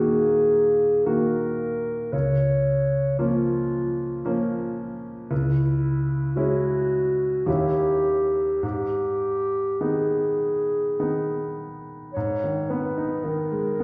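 A reverberant recital-hall sound surrounds this melancholic, yearning romantic duo for clarinet and grand piano, taken from a longer piece and moving slowly in 3/4 at around 50-58 BPM with a flexible, rubato feel. Up front, a dark, distant clarinet sings the melody over a clear concert grand piano whose accompaniment carries deep bass, the harmony beginning in E-flat minor before settling into G-sharp minor from 5.3 s. A new section begins at 12.2 s, just before the fragment ends at 13.8 s.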